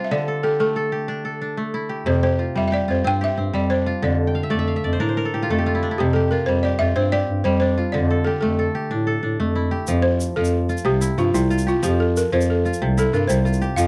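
This is a dry, close recording with a 1970s studio character and little reverb, cut from a longer piece of West African string and xylophone music. It moves in a flowing, joyful 12/8 at 123 BPM, counted in dotted quarters, with the harmony first circling around D minor and then settling on F and C. A crisp, ringing kora plays fingerpicked arpeggios up front from the opening, alongside a woody, buzzing balafon struck with rubber mallets that carries the melody. A dark bass clarinet enters at 2.1 seconds with a jazz-style bass line, roomy and coloured by vibrato. The kora adds a fill at 4.3 seconds. From 9.9 seconds the balafon takes a solo over major chords, and a grainy tube shaker joins quietly in the background.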